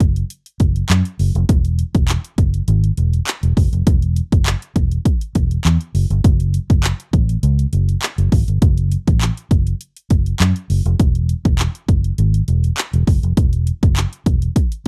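A punchy, overdriven house drum kit of kick drum, bright hi-hat and handclaps drives this confident dance-pop excerpt in F# minor at 101 BPM, with a dark, round, foam-muted vintage electric bass pumping against the sidechain beneath it from the start, both parts up front in a dry, rough home-demo mix.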